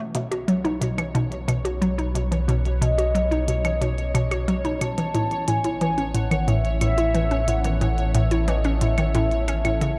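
A steady, straight 4/4 pulse at 90 BPM carries this cosmic, expansive excerpt of sequencer-driven ambient space music in A lydian, where a bouncy, hollow square pluck riff with tape echo sits up front beside a dark analog drone bass entering at 0.6 seconds, clicky electronic hi-hat and claves, a bright pulsing gated texture on C#5, and a resonant pad fading in on sustained chords, while a mellow, horn-like, warbling lead with vibrato and tape echo sings the melody over Bsus2 moving to Aadd9, all within a deep plate reverb and a dusky production.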